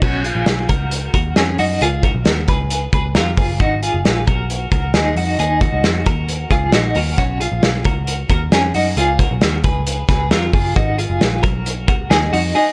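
Jangly indie pop at 134 BPM in a straight 4/4, tuned slightly flat to A4 = 438 Hz, this 12.7-second fragment of a longer piece feels wistful and restless. A bright, twangy twelve-string electric guitar sits up front with clean, compressed picked arpeggios, colored by tremolo and a plate reverb. Beneath it, a vintage muted picked electric bass gives a dark, round, foam-muted tone that is amped and punchy. The loose indie drum kit plays crash, hi-hat, kick and snare in a pumping studio room, with dark cymbals, a medium-tuned snare, a punchy kick and a rolled-off top, roughened by vintage 12-bit sampler grit. A light reverb sits over the mix as the harmony moves from Bsus2 to Abm7 and Ebm7, then returns to Bsus2 and Abm7.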